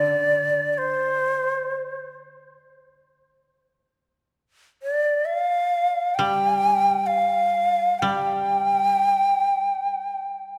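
Calm and austere, this brief cut from a longer piece of Japanese chamber music unfolds in free time, with a breathy, bright bamboo shakuhachi carrying the melody up front with vibrato, tongued attacks and a chiffy edge, while a dry, woody koto plucked with fingerpicks sits quietly beneath in a low accompanying range, both heard throughout in a moderate church reverb.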